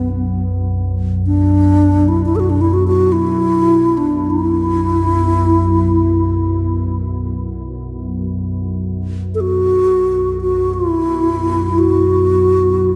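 Spacious and meditative, this world-style meditation piece drifts in free time in B minor pentatonic, cut from a longer work and set in a wet cathedral reverb with a long 5.1-second tail. A breathy bass flute carries the melody up front throughout the 13 seconds, its crisp attack, vibrato and expressive phrasing trailed by delay. Beneath it, a glassy FM pad holds a low drone with a slow attack, long release and an ethereal, mellow tone colored by ensemble chorus and its own reverb.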